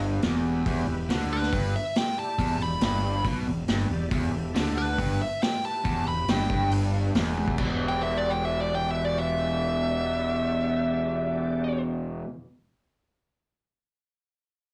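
A straight 4/4 pulse at 139 BPM drives this smoky, heavy blues rock power trio cut with a southern rock edge, set in E minor and taken from a longer piece. A bright, double-tracked distorted electric guitar plays a picked riff low in its range, up front, over a growly, punchy fuzz bass that sits on the bottom end. A vintage acoustic drum kit with dark cymbals, a tight kick and a medium-tuned snare enters at 0.2 seconds, playing crash, hi-hat, kick, snare and toms, then drops out at 7.7 seconds just after a fill at 7.4 seconds. In the background, a thick, gritty tonewheel organ holds sustained chords through chorus vibrato and a slow rotary speaker. A nasal lead guitar with a parked wah enters at 1.3 seconds and carries the melody up front, its overdrive paired with slapback echo. The harmony rests on Em before shifting to Em7 at 7.6 seconds, all in a light small room reverb.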